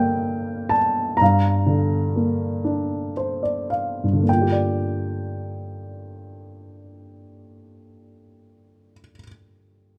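In a 6/8 metre, the music moves on a slow, elastic dotted-quarter pulse, played with free rubato and easing into a slowdown over the opening passage. This short, reflective and melancholic classical excerpt is taken from a longer piece and features a solo baby grand piano, heard up front with a dark, mellow and intimate character. Its boxy tone and short sustain sit alongside audible action noise, drawing the listener close to the instrument. A piano fill arrives at 2.6 seconds and carries the first section to its close at 4.3 seconds, where a second section begins and runs to 7.7 seconds. Close, detailed microphones capture the playing, set within a moderate recital hall reverb.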